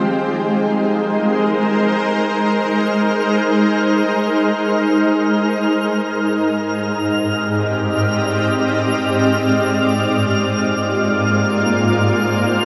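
Ambient in free time and Ab lydian, this serene fragment of a longer piece opens on a shimmering, ethereal pad of detuned sine tones with chorus and an octave-up shimmer, sustaining bright, up-front chords that move from Ab to Cm9/Ab at 6.0 seconds and Bb7/Ab at 9.6 seconds. From 2.9 seconds a twinkling, sparkling granular texture of FM tones glints softly high above on F6. A dark, warm production bathes the whole in a wet shimmer reverb with a long 8.7-second tail.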